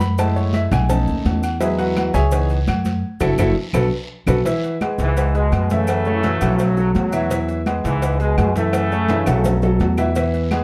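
A clear grand piano opens this joyful, danceable salsa at 168 BPM, taking a solo through the opening 4.5 seconds over a woody pizzicato upright bass up front, ringing high-tuned congas, a round low cowbell, agogo bells and timbales, compressed claves, grainy maracas and a raspy guiro, before a vintage-sounding trombone section with light vibrato carries the melody from 5.0 seconds and a bright, punchy second trombone line joins at 6.0 seconds, set in a dark production with moderate studio reverb.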